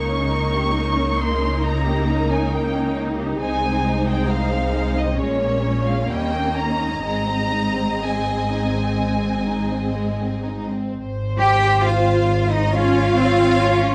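Close, detailed microphones and light reverb give this fragment of a slow romantic movement for string orchestra a clear, intimate sound, in Ab major at about 61-70 BPM with a tender, lyrical rubato feel. A smooth, even violin section carries the melody over a second violin line of rich, focused vibrato, while lush violas with expressive portamento sit distant in the accompaniment. Cellos with light vibrato and an up-front, warm double bass section anchor the bass, and a fresh passage opens at 10.9 seconds, arriving on Dbmaj7/Ab at 12.7 seconds.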